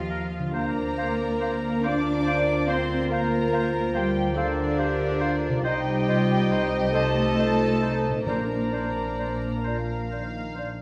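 A wet concert-hall reverb wraps this dark, warm orchestral film cue, an excerpt from a longer piece in Bb major that feels hopeful and moving at a slow, rubato 47 BPM in 6/8, drifting from Ebadd9 through Bbadd9/D and Cm before settling on Bbadd9. Floating, sul tasto violin sections carry the melody and a higher second line over soft-attack violas, intimate cellos with vibrato and woody double basses, while a distant, roomy French horn section holds dark sustained chords. An airy, hollow flute, a smooth-topped oboe and a mellow clarinet entering at 1.8 s add second lines, the flute and clarinet sitting in the background. A ringing thumb-plucked harp spins arpeggios, and very quiet, articulate timpani sound briefly at 8.3 s.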